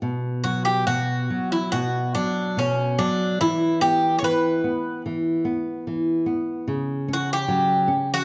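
A bright, metallic Greek bouzouki carries the picked melody on its double strings, with some octave-doubled courses, entering at 0.4 s over a warm, fingerpicked flamenco guitar accompaniment, both up front in this longing, passionate fado-style ballad in B minor at a rubato 73 BPM in 4/4, moving from B5 to E5 to F#5 within a dark production and a moderate recital-hall reverb, cut from a longer piece.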